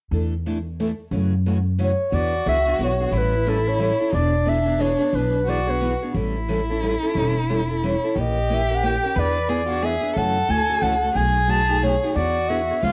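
Lively and playful, this short excerpt of acoustic string swing in E mixolydian moves at 179 BPM in a swung 3/4, with a bright picked steel-string acoustic guitar and a woody, growly upright bass sitting up front from the start, a breathy, mellow clarinet with light vibrato and a vintage tape tint taking the melody at 1.8 seconds, and a bowed violin adding an expressive second line with portamento from 2.1 seconds, the guitar, clarinet and violin each touched by plate reverb in a small room with the soft patina of a home cassette recording.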